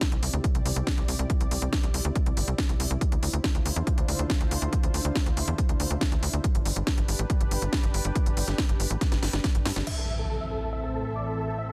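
A lush, thick sawtooth pad opens this 140 BPM uplifting trance excerpt in A minor, its sustained chords pumping against a heavy, overdriven kick and a layered electronic kit with a cracking snare, smooth hats and crash cymbal, while a filter sweep runs across the pad. A tight, nasal sequencer bass with a filter pluck drives underneath, the harmony moving from Cadd9 through Dm7 to G. A drum fill arrives at 9.0 seconds, and at 9.9 seconds an electronic impact hits as a huge, bright supersaw lead enters over Am, coloured by cassette tape, dub echo and its own filter sweep. The mood is soaring and euphoric, with little reverb and a dense, heavily limited modern master that keeps the kick and bass up front.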